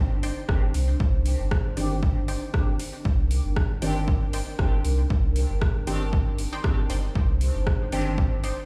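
Heard through a big sound system in a bare stone room, this cavernous, nocturnal dub techno excerpt sets a punchy, up-front electronic kick and an overdriven deep house kit of metallic hats and rim clicks under a round sub bass and a moody, detuned pad that both pump to the sidechain, while a muted, wave-folded chord stab trails phaser and dub echo and a juicy, resonant polysynth with a filter sweep joins at 1.8 seconds.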